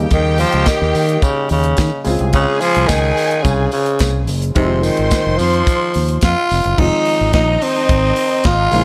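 A growling tenor saxophone leads this driving, danceable disco excerpt at 108 BPM, its raspy, breathy tone sitting up front over a tight funk drum kit with a dry, polished snare and kick and a warm, fingered electric bass that pushes forward in the mix. A focused, bowed string section with vibrato carries a second line while a worn grand piano comps in the background through Eb7, Dbmaj7 and Fm7. A jingly vintage tambourine sits low in a small room ambience and stops at 6.6 seconds, just before a new section arrives at 6.8 seconds.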